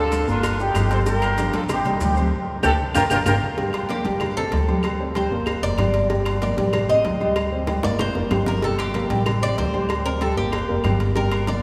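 A clear, punchy horn section leads this passionate, danceable salsa in G minor at 190 BPM, playing the melody up front with a light vibrato and a tight, vintage pop-style sound until 3.3 s. A drum fill and a band accent arrive at 2.3 s, and then a picked Cuban tres takes over with a metallic solo from 3.9 s, its double strings partly doubled at the octave. Underneath, a dark, mellow baby grand piano with short sustain supplies the accompaniment, while a woody, thumpy upright bass, played pizzicato on steel strings, sits up front. The percussion is busy: bright congas struck with hard hands, round low-tuned cowbell and bongos, ringing metal-shelled timbales and agogo bells, small-room claves and grainy maracas, which drop out alongside the horns. The harmony circles around Gm7, Am7b5 and D7sus4, and the whole band sits in a long, wet cathedral reverb that gives this cut from a longer piece the feel of a church or concert hall.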